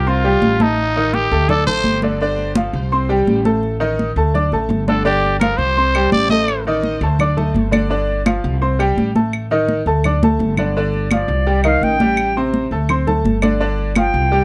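Salsa at a brisk 168 BPM in straight 4/4, fiery and danceable, this short cut from a longer piece opens with a raspy, growling trumpet carrying the melody in two brief bursts, the first ending at 2.0 seconds and the second running from 4.9 to 6.6, its tone gritty and punchy with light vibrato and a tape echo trailing behind. Underneath, a dark, thumpy upright bass with gut strings plays pizzicato in a low register, while a bright concert grand piano, brilliant with deep bass, fills out the accompaniment and congas with a thin, high-tuned, damped skin are struck with soft hands, close and dry. Woody claves join at 5.4 seconds, sitting lower in the mix than the other parts. The harmony circles through C, A suspended and D to G power chords, with an early Ebmaj7#11 over A adding a jolt of colour. After a drum fill, the second section brings a shift to C minor and A minor seventh as a reedy silver concert flute, pure with a soft attack and vibrato, takes a solo from 11.1 seconds to the end, all set in a light reverb.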